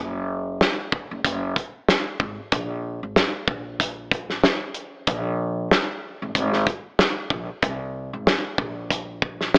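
An AM-radio sound with light reverb colours this gritty, tough boom-bap hip-hop excerpt, at 94 BPM in 4/4 with a 57% swing on the sixteenths. A woody, thumpy pizzicato upright bass on gut strings opens at 0.0 s, sitting dark and low beneath the drums. At 0.6 s a soul drum kit enters up front, its fat snare, tight kick and hi-hat recorded in a small room with a rolled-off top.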